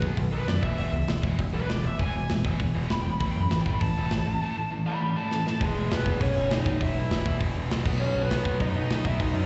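A bluesy overdriven lead guitar stands out in this upbeat, rowdy punk rock excerpt, entering at 0.3 seconds with a dark, distorted solo that rides slapback echo and analog delay over a fast 200 BPM pulse in E major. Beneath it, a growling picked electric bass sits up front with a bright, overdriven edge, while a tight metal drum kit drives the straight 4/4 feel with crash cymbal, hi-hat, a tight kick and a medium-tuned snare, its sound saturated and gritty with a rolled-off top. Two rhythm guitars play riffs: a tight distorted guitar with a bright bite and slapback echo, and a sludgy overdriven guitar sitting in the background, which drops out at 5.6 seconds just as a drum fill hands off to a new section. The chords move through B, E and A5 before settling back on E and B in the closing stretch. The whole performance sounds like a live gig heard through the venue's PA and captured on cassette, with recital hall reverb and a dulled, muffled top end.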